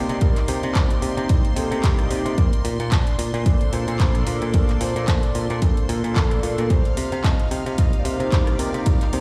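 Sensual and groovy, this nu-disco excerpt moves at 111 BPM in 4/4 with a light swing on the sixteenths, sitting in C dorian as the chords shift from Cm7 to Bbmaj9 at 2.4 seconds and back to Cm7 at 6.7 seconds. An up-front, punchy electronic kick anchors the groove alongside a growly picked electric bass, while a pop drum kit adds handclaps, rim clicks and metallic hi-hats with a tape-tinged character. A smooth, dark analog pad with slow attack and long release fills the middle, carrying chorus, cassette-tape coloring, delay and sidechain pumping. Up high, a lush vintage string machine ensemble holds sustained chords in the background, pumping under its ensemble chorus. A round, octave-layered synth lead sings the melody from behind the mix, its vibrato shaded by chorus, phaser and delay, and the whole piece sounds as if played through a big sound system in a bare room with a large studio reverb.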